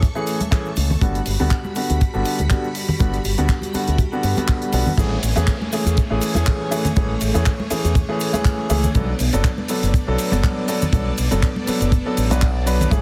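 Lush, vintage string machine chords with ensemble chorus and sidechain pumping sit in the background of this feel-good, swung nu-disco groove. They ride over a tight, dry kick, a tight, polished funk kit with hi-hat, ride, handclaps and cabasa, bright congas, and an up-front fingered electric bass run through an envelope filter. An intimate concert grand piano with audible action noise and delay joins at 0.2 seconds over Amaj7 and Gmaj7 harmony, and the drop arrives at 5.0 seconds as a very quiet downlifter sinks beneath it until 8.9 seconds, when the chords move to Bm7, all in a heavily compressed, radio-style mix with studio reverb.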